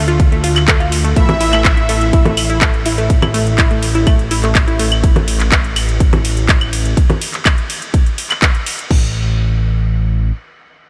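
A straight 4/4 pulse at 124 BPM drives this hypnotic, cinematic melodic techno excerpt, where a punchy, up-front electronic kick anchors a house kit of claves, congas, handclaps, metallic hats, ride and crash whose hats, cymbals and percussion pump under sidechain, beside a fat, detuned analog bass that also pumps, while a nasal, chorused analog pluck plays phaser-tinged arpeggios into diffuse delay until 4.8 s and, from 1.2 to 2.0 s, a very quiet, brassy synth melody with vibrato glimmers beneath a smooth, tape-coloured supersaw line, the mix set in light reverb.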